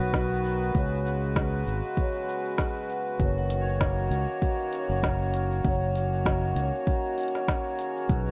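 Folktronica with a delicate, gently swung feel, this short cut from a longer piece moves from a B chord through C#7sus4 before settling on F#6 at 3.2 seconds, where a new section begins. A punchy fingered electric bass, direct and amped with tube saturation, sits up front in the low register beside a soft electronic kick that enters at 0.1 seconds. An organic electronic kit adds cabasa, crisp hats and a woody snare, both drum parts carrying a tape-warm tone from being re-recorded in a small room. Over this, a hammered, shimmering cimbalom plays arpeggios through tape echo, while a vibraphone struck with soft mallets, motor off, carries a mellow, close-miked second line that also feeds into tape echo. A reedy, sweet accordion holds sustained chords with light tremolo tuning and a touch of vintage 12-bit sampler grit, and a light reverb gives the whole a warm, intimate glow.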